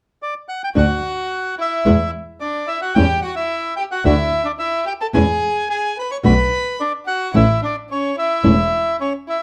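Elegant and playful, this short tango passage is cut from a longer piece in D major, moving at 109 BPM in 4/4 with a loose, rubato feel. A reedy, dark bandoneon carries the melody from 0.2 seconds, sitting up front with a touch of plate reverb. At 0.8 seconds a single bowed violin joins with a biting, earthy second line, its light vibrato and smooth top shading the tune. At the same moment a fingerpicked flamenco guitar enters with acoustic accompaniment, finger squeaks audible, and a single bowed double bass with an intense, airy, boxy tone and vibrato anchors the low end up front. The harmony passes through D, E5, Emadd9, E, Bm and A, broken by chordless moments, all set in a moderate club-sized room.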